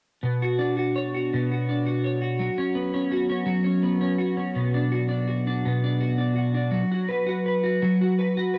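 A bright, twangy twelve-string electric guitar, clean, picked and compressed, sits up front from 0.2 s with a double-tracked, cassette-tape tint, moving through Bmadd9, F#sus4, Bm and F#sus4 in this dramatic, aching pop fragment in B minor at a slow 55 BPM in 6/8, set in a moderate, lush hall reverb on a home cassette recording, before being cut off at 8.6 s.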